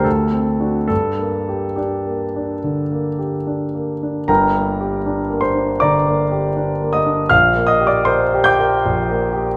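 Brooding and stormy, this short excerpt from a longer romantic character piece for solo piano sits in G minor, moving in 4/4 at a flexible 68-84 BPM with free rubato. A clear concert grand carries everything alone from 0.0 to 9.6 seconds, ranging from G1 up to G6, its deep bass and long sustain giving weight to the darker harmony. The sound is intimate and up front, polished yet close enough that the instrument's action noise is audible beneath the notes. A D7 chord opens the passage before settling onto G minor, and the same opening idea returns at 4.3 seconds, later leaning onto Gm/Bb near the close. The piano rings out into a wet recital hall reverb that lends a sense of space around its present, immediate tone.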